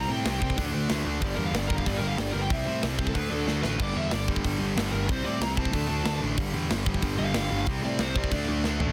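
This energetic, rebellious punk rock clip, cut from a longer piece, opens with guitars and bass together. A smooth, dark, overdriven lead guitar plays a solo over two picked rhythm guitars: a tight, bright distorted one and a sludgy overdriven one sitting in the background. A growly fuzz bass digs in underneath. The drums arrive at 0.3 seconds, and the polished metal kit sits up front with an airy big-room sound, a tight kick, a medium-tuned snare and bright cymbals, adding fills at 3.5 and 8.6 seconds. The harmony cycles through C5, D5 and G5 power chords in a straight four-beat pulse. The mix is dry, dense and heavily limited, with a modern finish.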